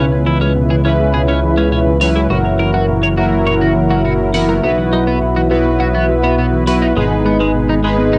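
This nostalgic, driving synthwave passage in C# minor opens at once on bold, fat analog synth brass stabs carrying a filter sweep, set up front with a glossy, mellow chorused synth bass built from pulse and sawtooth tones. Alongside them, a bright, twangy twelve-string electric guitar plays a clean picked riff, and a round, tine-like thumb-piano-like synth pluck ripples through arpeggios from the background with a gentle, warbling vintage character. A swirling, airy phased analog pad slips in at 0.1 seconds with slow-attack sustained chords behind everything. At a straight 103 BPM in 4/4, the harmony moves from C#m7 through F#7 and Bsus4 to G#m. Soft electronic hi-hats join at 2.0 seconds and drop out at 6.8 seconds. The whole piece sits in a wet studio ambience with the texture of a home cassette recording, and it is cut from a longer piece.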